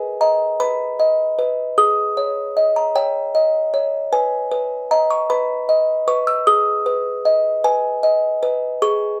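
A delicate, tinkling music box plays alone and up front throughout this brief 9.2-second passage cut from a longer classical lullaby, moving through G# minor harmonies at a slow 51 BPM in a straight 6/8, tuned slightly high to A4 = 444 Hz, with an eerie, fragile mood and a small, boxy room sound.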